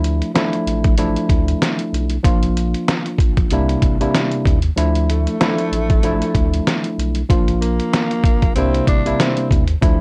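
Boom-bap hip-hop with a moody, gritty swing, built on a muffled, pitched-down sampler-style drum kit with a thumpy kick that drops out briefly around 4.8 seconds, a round, deep analog bass, and a worn, slightly out-of-tune tine electric piano with cassette-tape coloring, before a breathy, growling tenor saxophone enters at 5.1 seconds for a raspy jazz-style solo in this dry home-cassette excerpt.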